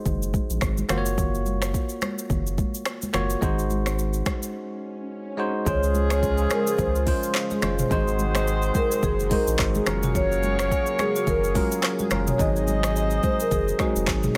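Lightly reverberant and sunny, this joyful afrobeats excerpt opens with a clean, bell-like tine electric piano, a round, deep analog bass, a produced afro-pop kit up front with a deep kick, metallic hi-hat, finger snaps, handclaps, rim click, shaker and toms, and bright, high-tuned congas in the background; an electronic background swell over a break at 4.5 seconds leads to a boxy marimba melody with tape echo, a tight horn section with vibrato and octave doubling, and a very quiet, detuned sawtooth pad with chorus, all entering at 5.7 seconds.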